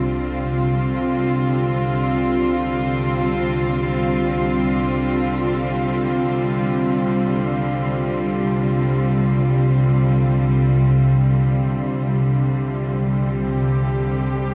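Desolate and dark, this dark ambient drone in free time sits on a Csus2 chord as a low organ-like drone, detuned and ring-modulated with a moving notch and a slow attack, sustains through an ensemble chorus and its own built-in reverb. An up-front studio cello section bows sustained chords sul tasto with light vibrato and a soft, intimate attack, while a bronze singing bowl rings with slow metallic beating, barely audible. Huge ambient reverb and a dark production that rolls off everything above 7.6 kHz give this cut from a longer piece a vast, shadowed space.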